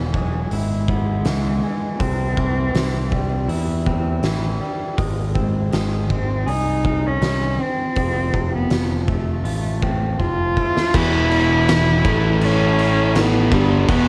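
Quiet-loud alternative rock in 4/4 with a straight, restless and anthemic feel, this clip is taken from a longer piece and was home-recorded on cassette with little reverb. A rich, bowed cello sings the melody with vibrato, soft attacks and portamento, while an electric guitar through a small old amp picks twangy, slightly broken-up arpeggios colored by spring reverb and tape echo. Underneath, a growling fingered electric bass with overdrive holds the low end, and an oversized, low-tuned acoustic drum kit pumps in a bright stone room, its fat snare, boomy kick and dark cymbals sounding saturated and gritty up front. A drum fill at 10.2 seconds leads into the louder second section at 10.9 seconds, where the arpeggiated guitar stops and a double-tracked, overdriven electric guitar takes over with a picked power-chord riff.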